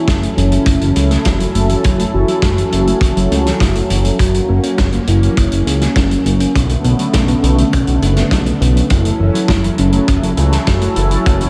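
Moody and cinematic, this synthwave passage moves at 102 BPM in a straight 4/4, set in F# minor and drenched in a dreamy plate reverb. A soft, octave-layered synth lead carries the melody from the first moment, its round triangle tone with a sub-octave beneath it colored by chorus, phaser, delay and a touch of vibrato. Beneath it, a smooth, detuned sawtooth pad holds sustained chords with a slow attack and sidechain pumping, while a tine-like, thumb-piano-style pluck plays very quiet, dark arpeggios. The fat, up-front analog bass is thick and tube-saturated, its sawtooth tone shaped by a filter sweep and sidechain pumping. A punchy, gritty acoustic kick and a loose indie kit with hi-hat and a medium-tuned snare sit mid-forward with a rolled-off top, while the harmony drifts from F#m7 to F# at 4.2 seconds, then Bm7, and back to F#m7 in this brief cut from a longer piece.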